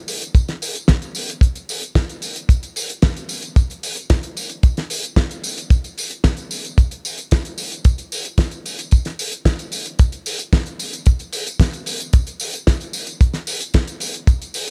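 The sound is close and dry, with little reverb and both drum parts placed up front. This is a short cut from a longer italo disco piece, a drums-only groove in straight 4/4 at 112 BPM that feels danceable with a melodramatic edge. A damped 70s acoustic kit of hi-hat, snare and tambourine plays from 0.1 seconds to the end at 14.7 seconds, its fat snare giving a warm body under a rolled-off top. A separate acoustic kick drum enters at 0.3 seconds and sits louder in the balance, its tight thump sounding until 14.4 seconds. The whole passage stays in a single section.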